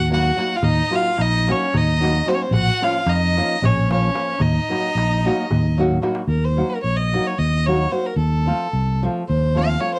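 A rich, earthy fiddle with light vibrato leads this bittersweet, virtuosic Balkan wedding-band tune, set in Eb Dorian with a raised fourth and driving along in 7/8 at 222 BPM, counted in eighths. Beneath it, a dark, woody violin played sul tasto with vibrato adds a close second line until 5.8 seconds. A punchy, amped fingered electric bass sits up front, and a fingerpicked nylon-string guitar with a classical tone and audible finger squeak fills in the accompaniment. A crisp metal-shell darbuka ticks along in the background, playing a fill that ends at 6.3 seconds, when the fiddle breaks into a solo as the harmony moves from E-flat minor and B-flat minor toward F. The sound is a home cassette recording with light reverb and lossy compression artefacts, cut from a longer piece.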